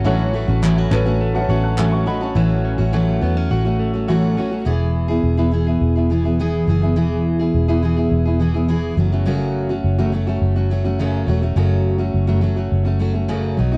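This heartfelt, easy-going acoustic pop excerpt opens with a full-bodied, up-front jumbo steel-string guitar, picked with audible finger squeak, over a round, punchy, foam-muted electric bass, while a woody upright piano with audible action noise and clean, compressed arpeggios from a direct-recorded electric guitar sound alongside them from the very start. Crisp, vintage-sounding group handclaps appear from 0.6 to 1.9 seconds, the piano drops out at 2.5 seconds, and the electric guitar stops at 5.2 seconds, leaving acoustic guitar and bass to carry the harmony from A6 through E to F#m. The guitars and piano carry a cassette tape character, all set in a small-room home recording.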